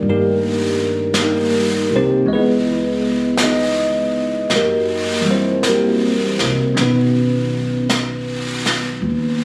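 This jazz ballad moves at a slow 54 BPM in 4/4, with a 68% swing on the eighth notes, and its mood is intimate and tender. A bell-like tine electric piano carries the accompaniment up front, its bright, clean tone colored by a phaser as it spans Eb3 to Eb5 through the changes Cm9, Dbm7, Gb7b9 and Badd9. Beneath it, a pizzicato upright bass on steel strings gives a warm, woody, thumpy low end between B1 and G2. A jazz kit played with brushes adds an airy, polished touch of brushed snare and hi-hat, with a medium-tuned snare heard in a small room. All three parts play together through the full 9.4 seconds of this fragment of a longer piece, tuned to A4 = 442 Hz. The sound carries the character of a phone recording in the room, dressed with light studio reverb and compression.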